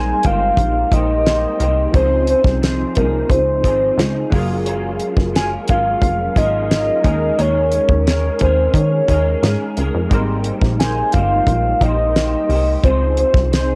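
Indie and bedroom pop at 88 BPM in Ab major, this sunny, dreamy clip drifts through lush maj9 chords and an Eb7sus4 as a round, dark octave-layered synth lead carries the melody up front with subtle chorus and vibrato. Beneath it, a slightly broken-up, picked electric guitar warbles through ensemble chorus and cassette tape, while analog keys with phaser and a filter sweep sit in the background until they stop at 12.9 s. A punchy, funky wave-folded bass and a dry 70s drum kit with a fat snare and tight kick hold the groove up front, all inside a homemade cassette recording with light reverb.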